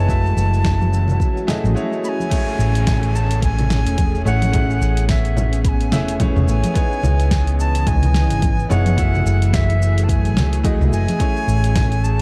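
A reedy, airy wooden flute carries the melody over brilliant grand piano, silky string-machine chords with ensemble chorus and a round, up-front hollow-body electric bass, in a sunny sunset chillout excerpt at 108 BPM in A lydian with a swung 16th feel. From 0.1 s a deep electronic kick and a deep house kit with a fat snare, hi-hat and shaker join, soft-handed congas follow in the background at 0.4 s, and a faint swell and downlifter arrives at 1.4 s, while the kick briefly drops out from 1.8 to 2.3 s. The flute, piano and strings shimmer in reverb and the flute adds tape echo, all within a dark production that moves through F#m9, Amaj7 and C#m9.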